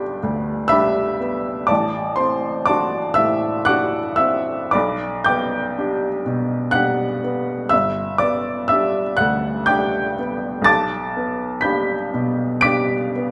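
A classical romantic nocturne for solo piano, this short passage cut from a longer piece carries a nostalgic, tender mood in an unhurried triple metre with a flexible, rubato feel. The upright piano plays alone for the full 13.3 seconds, ranging from G1 to D7, and its tone is woody, polished and intimate, with the mechanical sound of its action plainly audible. Placed up front and present, the instrument stays clear even as a wet recital hall reverb lends it a spacious halo. The harmony moves gently from G to D7/A, then settles through G/B and G before returning to G/B near 10.7 seconds, giving the moment a quietly yearning, unresolved quality.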